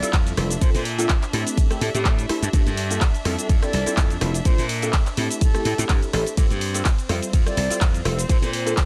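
Filtered disco house at 125 BPM with a swung 16th-note feel and a nostalgic, funky mood, this excerpt cycles through Fmaj9, Bbmaj9, Am7 and Gm7, tuned slightly flat to A4 = 435 Hz. A punchy electronic kick sits up front from 0.1 seconds with a glassy, tube-saturated slap bass, while a house kit of handclaps, bright hi-hats, ride cymbal, rim click and shaker pumps against the kick. A detuned sawtooth-and-square polysynth comp with chorus, phaser and cassette-tape color runs alongside a distant, smooth violin section holding sustained chords, and a reedy silver concert flute carries the melody in the background, roughened by vintage 12-bit sampler grit and trailed by dub echo.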